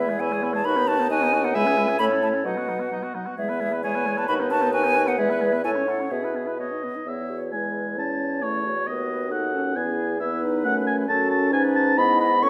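A quick classical-period movement for wind quintet, this passage is cut from a longer piece and has a cheerful, lively character in a duple metre with a supple, rubato feel. The concert flute carries the melody with an airy, hollow tone, a crisp attack and vibrato, and it sounds close and present. Alongside it the oboe sings a second line with light vibrato and a soft attack, while the clarinet and French horn fill out the accompaniment in a warm classical style. The bassoon anchors the bass with a mellow yet punchy, slightly vintage character. All five instruments play throughout, and the music moves into a new section at 7.1 seconds, all set in the wet reverb of a recital hall.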